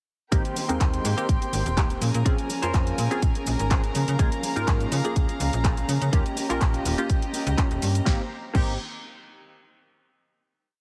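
Filtered disco house at 124 BPM in Ab major, with a feel-good, joyful lift and a light 16th-note swing. A punchy four-on-the-floor electronic kick sits up front, joined by a house kit of bright programmed hats, a punchy snare and handclaps on the backbeat, plus cabasa and crash, with the hats, percussion and cymbals pumping against the kick. A snappy FM bass with a metallic attack carries a funky syncopated line, while a sawtooth-and-square polysynth plays a rhythmic chord riff in rootless voicings, colored by chorus, phaser and a filter sweep. A clean, fingered electric guitar strums sixteenths in upper chord shapes, and a distant, reedy string section with gut-string tone and light vibrato holds bowed chords, roughened by vintage 12-bit sampler grit. The bass, guitar, synth and strings all pump with the sidechain through a drop that cycles Abmaj9, Bbm7, Db6 and Eb7, landing on a final Abmaj9 at 8.1 seconds. 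The mix has light reverb and a heavily compressed, radio-like sheen.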